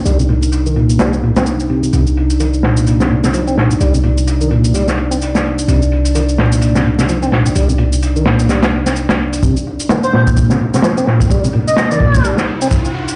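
Vinyl crackle and a dull, roomy sound, as if played over a big sound system in a bare room, frame this funky, energetic breakbeat cut at 128 BPM, swung on the sixteenths and centred on Cm7. A crunchy, saturated drum kit sits up front with a tight kick, joined by a quiet shaker and a deep, boomy 808-style bass, while a fat tonewheel organ with key click, slow rotary speaker, overdrive and delay plays a riff over a warbling, detuned lo-fi pad that pumps with the beat. From 9.4 seconds the bass drops out and a build-up sweeps filters over the drums and organ, an airy, dreamy lead with vibrato and an old-record tone sings briefly from 10.0 seconds, and a background riser enters at 11.4 seconds to carry the cut to its end.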